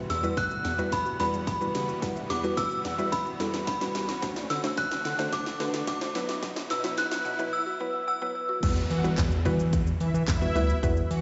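Heard through a venue's PA in a live club setting, with recital-hall reverb and a muffled top end, this energetic, bittersweet dance-pop excerpt in E minor moves at 109 BPM, opening with a build-up over Emadd9, D7 and Bsus4. Up front, a punchy house kit with a cracking snare, handclaps, shaker and crash carries a drum fill, while a round, deep analog bass pumps beneath a woody FM mallet pluck. A second, more distant pluck arpeggiates through phaser and delay, huge supersaw chords sit behind, an inharmonic, ringing chime plays the melody, and very quiet risers and downlifters rise from the mix. At 8.6 seconds the drop returns to Emadd9, and from 8.9 seconds a lush, airy supersaw pad takes over the melody.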